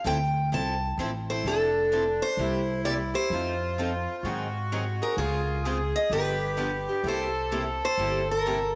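Acoustic string swing in the jazz manouche style, this charming fragment of a longer piece moves at 128 BPM in F major with a lilting swing feel. A bright, up-front picked steel-string guitar with fresh strings and finger squeak carries the melody, taking a solo from 0.0 to 1.4 s. Two boxy parlour-toned guitars pick out the accompaniment, one set further back, over a woody, thumpy pizzicato upright bass on gut strings, while a reedy, close-miked accordion with slow beating adds a second line from 1.5 s. A wet echo-chamber reverb colours the sound as the harmony travels from Fmaj7 through Ab7 and Dbmaj7 before settling on C7.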